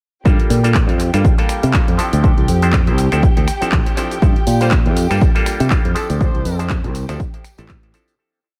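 This short, funky and sensual filtered disco house piece in D minor opens with an auto-wah clav at 0.2 seconds, its hollow, nasal, stringy chord riff run through a phaser, analog delay and sidechain pumping, before the full drop arrives at 0.3 seconds. At that point a punchy, tape-warm electronic kick drives a four-on-the-floor pulse at 121 BPM with a 16th-note swing, joined by a programmed house kit of closed and half-open hats, cabasa, finger snaps and handclaps, its percussion and hats pumping against the kick. An up-front, growly fingered electric bass plays a syncopated funky line, while a smooth studio string section sits in the background with bowed, vibrato-laden held high notes over the Gm7 and Dm7 changes. A very quiet tambourine enters at 4.2 seconds, and at 4.6 seconds a fat, wave-folded analog synth brass adds short, mellow answering phrases coloured by chorus and delay. The mix is soaked in echo, and a fade-out begins at 5.5 seconds and carries through to the close.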